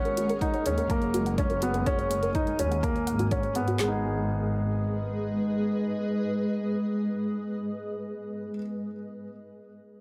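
A dark, blurred granular cloud pad, a felt-muted upright piano with delay and a bowed double bass section with tube saturation lasting until 5.2 s open this cinematic, moving excerpt of piano and strings electronica in G# minor at 124 BPM. They are joined by a round pluck arpeggio under a filter sweep, and deep house drums with woody snare, handclaps and dark electronic hi-hats that stop near 3.9 s, as the chords move from F# to G#m in a moderate concert hall reverb.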